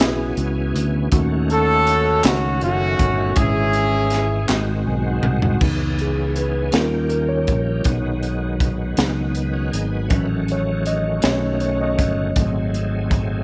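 Soulful and fervent, this slow gospel excerpt in 6/8 and C# minor at 53 BPM opens with a soft-attack horn section carrying the melody over mellow tine electric piano, a shouting tonewheel organ with fast rotary speaker, overdrive and chorus vibrato, round fingered electric bass and a crisp fusion drum kit with a punchy kick and high-tuned snare; hollow group handclaps join at 2.2 seconds, the horns stop at 4.5 seconds, and after a drum and electric piano fill the electric piano takes a solo from 5.6 seconds to the end, all set in light reverb.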